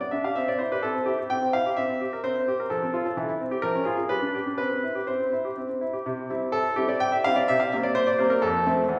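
A bright baby grand piano plays alone in a playful, elegant classical-period sonatina in three-time, tuned to A4 = 435 Hz and spanning E2 to G5. The brilliant, up-front tone carries audible action noise and an intimate presence, set inside a wet recital-hall reverb that places it in a church or concert hall. The harmony settles back on C at 4.6 seconds, and a new passage begins at 6.1 seconds before this short portion of a longer piece breaks off.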